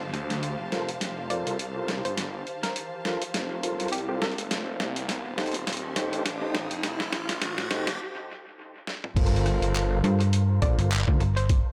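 Funky and playful, this glitch hop excerpt builds over its first 9.2 seconds as a swirling, thick phased saw bass and a gritty, pitched-down boom bap drum kit with dub echo carry mellow, rotary-speaker tonewheel organ stabs, while a distant, lush string section pumps in the background, a woody wave-folded pluck sketches a brief melody and an electronic riser climbs behind it all. After a short break, the drop at 9.2 seconds brings in a thumpy electronic kick, followed at 10 seconds by a snappy, metallic slap-like FM bass up front. The whole mix is echo-heavy with a light reverb.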